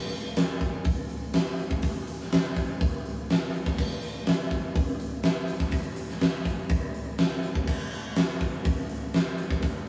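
A rough rehearsal-room recording with small room ambience and a moderate, short reverb frames this menacing, driving rock fragment, cut from a longer piece. A huge arena drum kit sits up front, playing a straight 4/4 feel from 0.1 to 9.7 seconds with crash cymbal, hi-hat, kick and snare. Its acoustic hall sound carries a pumping room, bright cymbals, a fat snare and a punchy kick.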